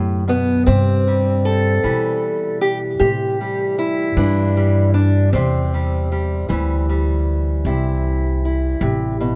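Acoustic country blues in a laid-back 12/8 at 52 beats per minute, this short cut from a longer piece still carries a rollicking, easygoing feel. A fingerpicked steel-string parlour guitar carries the melody, its tone dark and boxy as it sits up front. Beneath it, a pizzicato upright bass with steel strings gives a woody, warm low end. Both instruments play throughout the 9.4 seconds, with the harmony moving from G to C at 0.7 seconds. Close, detailed microphones and little reverb keep the sound intimate and dry.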